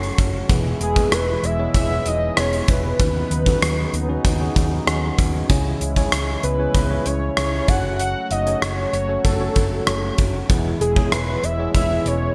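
1980s-style pop at 96 BPM in a straight 4/4, dramatic and nostalgic, this short passage cut from a longer piece has a fat, full-bodied sawtooth lead with vibrato and digital delay carrying the melody over a worn, slightly out-of-tune electric piano that is lightly overdriven, and a lush, nasal unison pad with chorus sitting in the background. A dark, foam-muted fingered electric bass adds round punch, while a gated 80s drum kit of kick, hi-hat and rim click sits up front in a bright stone room, its kick especially punchy. The chords move from E through Badd9/D#, C#m and F#m before returning to E at 10.5 seconds, all wrapped in a moderate plate reverb and bright digital production.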